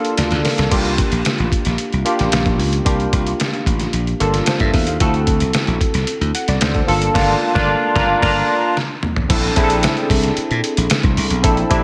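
Polished 1980s jazz-funk pop at 112 BPM in a straight 4/4, this short cut from a longer piece carries a nocturnal, slick mood. A barky tine electric piano sits up front as accompaniment, its bright tone lightly overdriven through a combo amp and thickened by analog chorus, moving through C13sus4, C7sus4, D7 and Gm7 before landing on Bbmaj9#11. A lo-fi sampler-style drum kit, compressed, pitched down and muffled, gives a thumpy kick and a fat snare with crash, hi-hat and toms, sounding overdriven and re-recorded in a large room. Slap bass enters at 0.2 seconds with a punchy, direct-and-amped electric sound. Drum fills lead into both sections, and a band accent from 7.2 seconds runs alongside an electric piano fill, passing through a chordless moment at 8.8 seconds before the new section at 9.3 seconds. Light reverb and digital ambience give the mix a glossy sheen.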